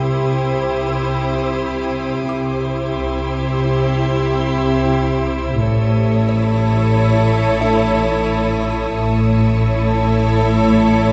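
An eerie, ominous cinematic passage in free time opens with bowed strings, as a violin section carries the melody over a second violin line and a focused viola section, while an icy, crystalline glass pad with chorus and its own reverb sustains chords. Rich cellos and an up-front double bass section hold the bass, and a distant, expressive high violin texture sits in the background as the harmony moves from C to A at 5.6 seconds. A delicate, tinkling music box enters very quietly at 2.3 seconds and stops at 9.6 seconds, all set back in a wet scoring-stage reverb.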